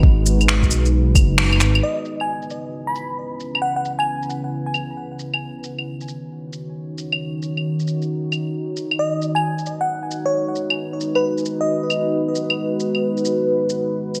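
Future garage with a nocturnal, wistful mood, this excerpt opens on a deep, moody pad of detuned saws with chorus and reverb, a rumbling, beating saw bass and a soft, overdriven kick. The kick falls away by 1.3 seconds, just before a band accent at 1.4 seconds, and the bass follows by 1.8 seconds. Swung, overdriven cabasa, shaker, claves and finger snaps sit up front with gated reverb while the pad sustains chords from G#m7 through C#m7 and D#m7 and back. A bell-like, sparkling FM electric piano with chorus and delay floats a melody above, first from 1.8 seconds and again from 9.0 seconds, all inside a lush hall ambience with a bright 1980s digital sheen.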